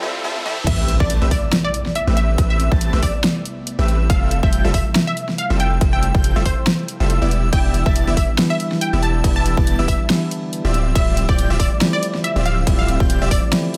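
Future bass at 140 BPM in A minor with a half-time, lightly swung feel, this dreamy, lush passage is cut from a longer piece. It opens on a brief break where a background riser and impact, a punchy detuned supersaw stab riff, and a clean, direct tine electric piano set up a short drum fill. At 0.7 seconds the drop lands, with the impact ringing out until 2.4 seconds. A punchy overdriven kick and a big-room dance kit with a huge, up-front snare, crash, hi-hat and toms drive the drop, under a deep, mellow 808-style bass that sustains from D1 to A1. A bright, detuned unison pluck carries the melody with digital delay, while an airy, chorused lead arpeggiates high above and a very quiet breathy pad holds chords through Am9, Fmaj9, Em7 and Dm11. The stab, pluck, lead, bass and electric piano, which returns at 7.5 seconds, all pump against the sidechain, and the mix stays dry with little reverb.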